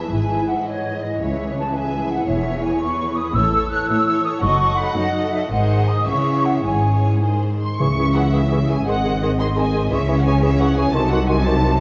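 A bright, airy flute ensemble rides over lush bowed strings in this dramatic, restless excerpt from a fast romantic orchestral movement in 6/8 with rubato, where a violin section sings an expressive melody above a second violin line, woody violas, and rich cellos and double basses, until at 7.8 s a mellow cor anglais, clarinet and bassoon, distant, roomy French horns and briefly soft-mallet timpani join in the background, heard through a moderate stage reverb with a dark production and vinyl crackle.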